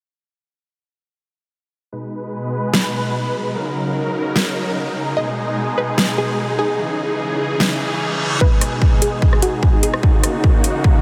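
Heavy and chaotic, this cut from a longer heavy wobble dubstep track runs at 148 BPM in a half-time 4/4 feel in G# minor, opening at 1.9 seconds with huge, bright, detuned supersaw chords that pump with sidechain, shimmer through a phaser and ride a filter sweep, soon joined by a drum kit of huge snare, metallic hats and rim click, a background sawtooth unison pluck melody with subtle chorus and tape echo, and a background reverse cymbal and riser, before a punchy, tape-warm electronic kick lands up front at 8.4 seconds to drive the build-up, the whole mix soaked in a dreamy, long ambient reverb.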